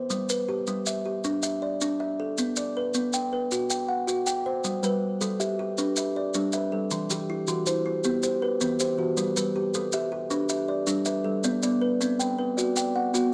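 A moderate echo-chamber reverb surrounds this rippling southern African traditional cycle in G major at 106 BPM in a straight 12/8, where an up-front, woody kalimba with a hollow-box ring opens with thumb-plucked arpeggios, close, dry, grainy maracas join at 0.1 seconds, and a second, softer, airy kalimba adds fingertip-plucked arpeggios from 4.8 seconds over chords moving between G, Bm and Em in this short cut from a longer piece.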